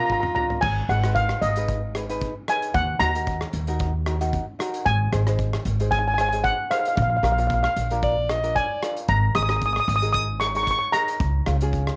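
Calypso at 114 BPM with a brooding, moody cast, this cut from a longer piece features a mellow, shimmering steel pan carrying the melody up front, played with soft rubber sticks over light, fingerpicked ukulele and a woody, thumpy pizzicato upright bass that also sits forward. A loose indie drum kit with dark cymbals and a punchy kick opens with a fill, while a breathy, whispered alto saxophone adds a close-miked second line at the start and again at 8.0 seconds. The pan, saxophone, ukulele and drums carry a cassette-tape grain, and the home recording has light reverb.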